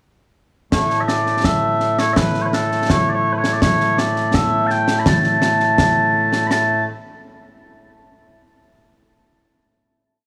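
Proud and stirring, this short, complete piece of Scottish traditional pipe music moves in a straight 2/4 feel. Mellow small bagpipes carry the melody from 0.7 seconds, their sweet, continuous tone sitting up front as a solo voice that spins a modal line dressed with ornaments across a range from A2 to B5. Concert snare drum and concert bass drum enter at the same moment, playing a marching snare pattern with dark cymbals, their acoustic sound close and dry and also placed up front. The pipes and drums run together through a single section before the tune reaches a final note at 6.5 seconds, with the piece closing at 8.0 seconds. Light reverb and a small room ambience give the performance an intimate setting.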